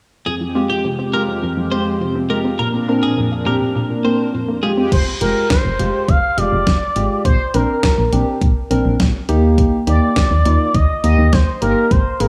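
Up front, a smooth, expressive synth lead with vibrato, chorus and analog delay carries the melody from 4.9 s, over a punchy, round FM bass and a clean 12-bit digital drum machine with a thumpy kick, fat snare, hi-hat and crash cymbal. This driving, cool synth-pop excerpt in F dorian at 103 BPM opens at 0.3 s with soft, detuned electric-piano-like keys, a brassy analog pad with chorus and tremolo, a lush sawtooth unison pluck playing arpeggios in the background, and a clean, picked twelve-string electric guitar with spring reverb. The guitar drops out at 4.7 s, and the pad and pluck fall away as the lead, bass and drums arrive, while the keys continue over Fmadd9, Bbadd9 and Eb chords in light small-room ambience.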